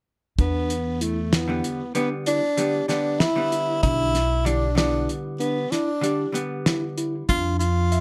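Progressive instrumental band music in a straight 11/8 at 191 BPM in eighths, tense and brooding in E phrygian, with a breathy, whispered tenor saxophone leading up front with scooped notes and vibrato, a mellow tine electric piano arpeggiating in the background through tape echo, woody pizzicato upright bass and a cloth-damped, thuddy drum kit with a fat snare, a hollow-body jazz guitar adding dark, picked accompaniment from 1.5 to 7.2 seconds, all under light reverb as Em7 gives way to F5 near the end of this cut from a longer piece.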